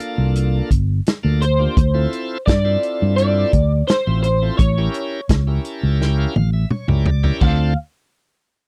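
A dry, close 1970s-style studio sound frames this mournful, brooding soul blues fragment in D minor, moving at a straight 85 BPM in 4/4 over Gm9, Dm9 and A7b9 chords. Up front, a bright, twangy electric guitar through a small old amp carries the melody with a slightly broken-up, lo-fi bite and analog chorus. A shouting, lightly overdriven tonewheel organ with key click and rotary speaker fills in behind, while a round, punchy fingered bass from 0.2 s and a dark-cymballed acoustic kit hold the groove, with an organ fill at 5.3 s and a drum fill at 6.0 s.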